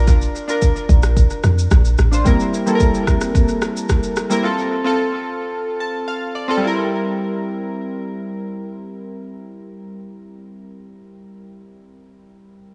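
A straight, joyful afrobeats groove opens this sunny fragment, with an electronic, up-front drum kit of deep kick, rim click and shaker that drops out at 4.4 s, while a dark, round log drum bass with a percussive FM bite and a noise layer sounds only until 2.2 s. Carrying the piece throughout are detuned analog keys built from pulse and sawtooth waves, warm and evolving under a filter sweep, with chorus and tape echo, and they add a fill from 5.5 to 6.6 s before a second section arrives. The mix is echo-heavy with a small room ambience and little reverb, moving through chords of Bb, C7 and F.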